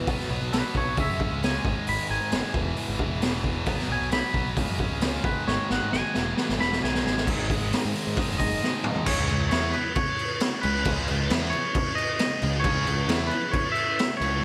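Quiet-loud alternative rock in C# minor at 134 BPM, this brooding, dark excerpt drives in a straight 4/4. A heavy high-gain guitar and a thick fuzz guitar with slapback echo, sitting in the background, churn out the riff from the start, over a growling picked bass with overdrive and a raw garage drum kit that sits up front with a boomy kick, a high-tuned snare and a gritty, rolled-off top. From 0.5 s a twangy, clean electric guitar, played with the fingers and treated with slapback echo and analog delay, carries the melody high above, taking a clean solo through the opening stretch while the harmony moves through C#m, E and power chords on G#, B and C#. Drum fills push toward a shift at 7.3 s, where a very quiet, shimmering vintage string machine enters with soft sustained violin chords alongside a second, double-tracked fuzz guitar, as the harmony settles on G#sus4 before returning to C#m at 9.1 s. 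A moderate, lush hall reverb gives the mix a big arena sound.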